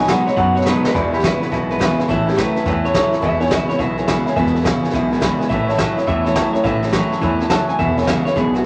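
Vinyl crackle and a large, wet studio reverb frame this rowdy, rollicking rockabilly excerpt, which swings at 210 BPM in E major. A drum fill at 0.7 seconds kicks off the main section at 0.9, where the chords move from E to A and back to E. Up front, an electric guitar through a small old amp carries the twangy, slightly broken-up melody. Beneath it, a clean, bright electric guitar picks a low riff soaked in spring reverb. A growly pizzicato upright bass and a vintage brush kit with a fat snare and punchy kick drive the rhythm. Further back, a full-bodied picked dreadnought acoustic guitar and a dark, mellow upright piano with short sustain fill in the accompaniment.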